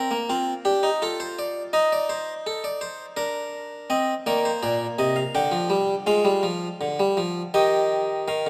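Set in a stately 3/4 at 83 BPM with a straight feel, this short passage from a longer baroque-style fugue in Eb major moves with joyful elegance. A solo harpsichord carries all three contrapuntal voices, ranging from Bb2 up to G5, and plays across the full 8.5 seconds. Its French-style tone is bright and airy, with a plucked attack from a single set of strings that sits up front in the mix. The harmony passes from Bb through F and a colourful Cmadd9/Eb, then Bb/D and an open Eb5, reaching a Dmadd11 at 5.4 seconds before settling on Eb at 7.6 seconds. Close, detailed microphones capture the instrument clearly, while a moderate concert hall reverb adds a sense of space around it.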